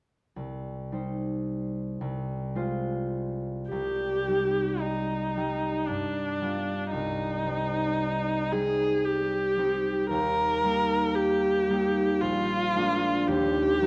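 A rich, smooth viola carries the melody with steady vibrato, entering at 3.7 seconds over a concert harp that has been playing alone since 0.4 seconds, its fingerpicked accompaniment ringing and warm. This elegiac, solemn romantic duo in C minor moves in a slow 56 BPM triple metre with rubato phrasing, its harmony turning from C minor through G7 toward E-flat and B-flat7. A dark production places both instruments up front within a moderate concert hall reverb, in a short passage cut from a longer piece.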